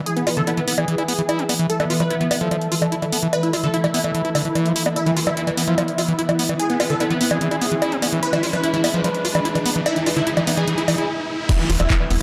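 Soaked in a wet digital room reverb, this excerpt of alien, intense psychedelic trance builds while a filter sweeps across a bubbling, resonant stepped-filter texture of sustained chords with vintage sampler grit, over a faint, dark, warbling tape-like pad and a background riser and downlifter. Up front, an overdriven drum kit of bright hi-hats, bongos, handclaps and crash cymbal plays alongside a punchy detuned supersaw stab melody run through phaser and tape echo, while a squelchy, screaming acid riff cuts in with distortion and dub echo. After a stop at 11.1 seconds, a knocking electronic kick lands at 11.5 seconds and a tight, plucky sequencer bass follows at 11.7 seconds.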